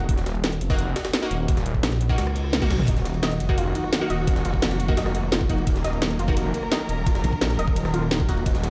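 Futuristic and aggressive, this dark technical drum and bass excerpt at 172 BPM in Eb minor opens with bold, punchy orchestra-hit-like synth stabs over a thick, detuned saw bass with chorus and tube saturation, a knocking electronic kick, a drum and bass kit with cracking snare and metallic hats, and a gritty, pitched-up jungle sampler-style kit tucked in the background; a heavy pulsing pluck wobble bass comes in up front at 1.8 seconds, a reverse cymbal and drum fill lead into 2.9 seconds, where dark, bowed symphonic strings with expressive vibrato and a soft, round pluck arpeggio with delay both enter, pumping with sidechain compression in a large, reverberant studio space.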